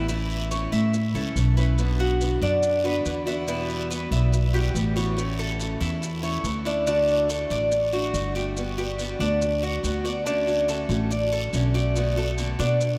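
A straight 4/4 Cuban son and guajira groove, relaxed and sunny, is carried by up-front arpeggios on a metallic, double-strung tres with some octave-doubled strings and a woody, thumpy pizzicato upright bass on gut strings, while a boxy, picked archtop guitar fills in the accompaniment, a raspy guiro plays in a live room and grainy, mellow maracas sit close and dry in the background, all set in a vast, echoing space with huge, lingering reverb in this brief passage cut from a longer piece.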